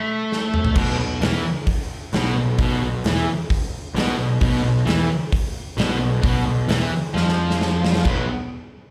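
Heard through a club PA with light reverb, this swaggering, driving blues rock and southern rock fragment opens with a thick, double-tracked fuzz guitar riff, joins a big, punchy rock drum kit with crash, hi-hat, snare and toms rolling a fill at 0.3 seconds, and brings in a growly, overdriven picked electric bass at 0.8 seconds over a Bsus4 chord before a closing drum fill lands on B5.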